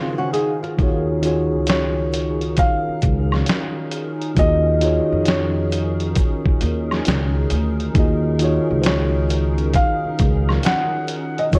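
A gritty, sampler-style drum kit sits up front in this reflective, nostalgic lo-fi hip hop excerpt, its thumpy kick, fat snare and hi-hat carrying a compressed, 12-bit crunch and the air of a large room, swung on the 16ths at 67 BPM in Eb minor. A woody pizzicato upright bass on steel strings joins at 0.8 seconds, sitting close alongside the drums, while an egg shaker, woodblock and group handclap stay dry and close in the background. Underneath, a mellow tine electric piano plays accompaniment through its built-in speakers with a cassette tape coloring, and a hollow, flute-like pad holds sustained chords beginning on Ebm11, softened by slow attack, long release and ensemble chorus. A dark, fingerpicked nylon-string guitar with old strings offers a brief second line through analog delay in the opening second, before a muted upright piano with thick felt takes the melody from 1.7 seconds, intimate and shadowy, its action noise audible. 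Light reverb and small room ambience frame the mix, and the whole recording wears worn, warbling old tape with a drifting pitch.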